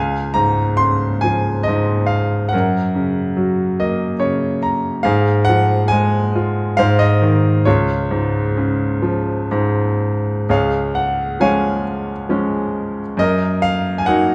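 A clear, boxy grand piano sits up front from the first moment in this tender, calm classical excerpt: a lyrical solo in 3/4 and Db major, tuned to A4 = 442 Hz, with a rubato feel drifting between 59 and 73 BPM, ranging from Db2 to C6 as it moves through Db, Gb, Fm/Ab and Ab harmonies, adding a brief fill between 3.4 and 5.0 seconds, then shifting into a new section at 10.5 seconds that comes to rest on a Gb6 chord, all set in a moderate recital-hall reverb.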